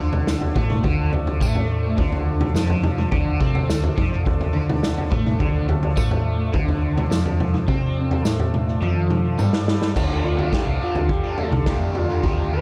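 This trippy, brooding psychedelic rock excerpt in D minor opens with a reedy, nasal harmonium holding close-miked sustained chords, a bright, double-tracked overdriven guitar riff coloured by phaser and tape echo, and a round hollow-body bass sitting in the background. A punchy vintage kit with dark cymbals and a pumping small-room sound drives the straight 105 BPM groove from up front, a jingly, distant tambourine sits behind it, and a drum fill arrives at 8.8 seconds. At 10.2 seconds a mellow, clean combo organ enters with a short tape-echoed melody, rounding off an echo-heavy mix with light reverb.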